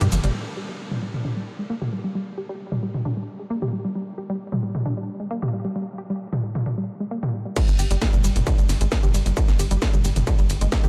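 Driving and industrial, this excerpt of peak-time techno at 133 BPM in G phrygian opens with a brief drum-fill break before a detuned, chorused analog pluck riff with tube saturation and delay rides a filter sweep over a cracking-snared, low-pass-filtered techno kit, until the drop at 7.6 seconds brings in a distorted, up-front kick and the return of a tight, punchy sawtooth sequencer bass pumping under light reverb.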